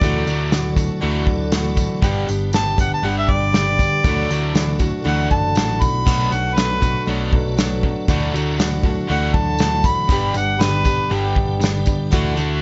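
A mellow, up-front harmonica carries the melody from the first moment, its scooped, vintage-toned notes playing a hopeful, nostalgic solo over a straight folk rock and heartland rock groove built on Dadd9, G and Bm7 chords. Beneath it, a picked plugged-in acoustic archtop guitar with fresh strings and audible finger squeak plays accompaniment alongside a bright, overdriven, double-tracked electric guitar riff, while a round, dark hollow-body bass and a soft brush kit with a punchy kick hold the pulse. A very quiet, piping tonewheel organ with key click and slow rotary speaker sustains chords in the background, a close, jingly tambourine adds sparkle, and the harmonica drops out at 11.1 seconds just before this light-reverb excerpt ends at 12.6 seconds.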